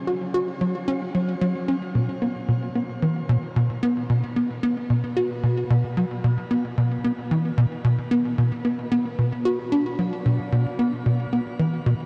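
Hypnotic and mysterious, this ambient fragment features a solo sequencer bass, tight and punchy with a wave-folded, filter-plucked tone and a moving notch, driving from 0.1 to 11.9 seconds through lush chorus and delay, all bathed in a long shimmer reverb within a dark production.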